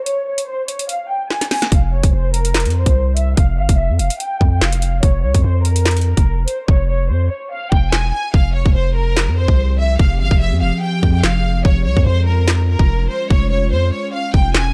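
A half-time drill groove at 145 BPM in 4/4 drives this dark, menacing hip hop excerpt. It opens with a brief break and a drum fill before a long 808-style bass arrives at 1.7 seconds. The electronic drum kit sits up front, with a hard-clipped kick, a woody snare, metallic hats and handclaps carrying a tape-warm grit, and the hi-hats are muted from 6.7 seconds onward. The deep, sine-toned 808 has a fast attack and a long decay. From the start, a lush, bowed studio violin section carries the melody in F harmonic minor with vibrato and a smooth, focused top, heard through a low-pass filter that sweeps over its first stretch. At 9.2 seconds an ethereal, airy pad with a slow attack and mellow detuned tone adds sustained chords, softened by ensemble chorus and its own reverb, over a progression that moves from F5 to Bbm, Fmadd9 and Db/F in a dry, close-sounding mix.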